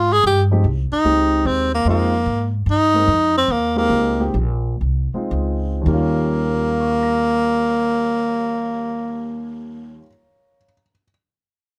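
Close, detailed microphones and light reverb give this short cut from a longer jazz piece a warm, sophisticated air: a small-group swing and bop tune in 3/4 at 103-148 BPM, with swung eighths in Eb mixolydian. A breathy, clear tenor saxophone carries the melody up front with soft attacks and scooped notes over a woody, growly pizzicato upright bass, while a dark, mellow baby grand piano joins at 0.5 s with long-sustained accompaniment. The tempo slows between 3.1 and 5.9 seconds before the second section opens on an Eb9 chord.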